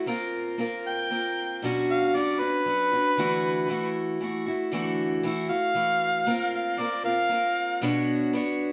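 Rock in an open-road mood at 116 BPM in a straight 3/4, where a boxy, parlour-sized picked steel-string acoustic guitar with audible finger squeak sits up front through Bbsus2, Bmadd9 and Dadd9 chords, while a bright, punchy pop-style harmonica takes the solo from 0.9 s to 7.8 s with light vibrato and a slapback echo, all set in a moderate large-studio reverb.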